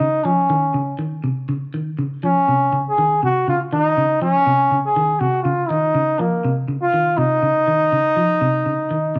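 Intense and hypnotic, this short afrobeat clip from a longer piece moves at 121 BPM in 4/4 with a lightly swung sixteenth-note feel, set in Eb dorian. A bright, roomy trombone carries a pop-style solo melody across the full 9.2 seconds, while a clean, picked semi-hollow electric guitar with a hollow-body tone plays arpeggios up front beneath it. A moderate echo-chamber reverb gives the studio sound a spacious glow.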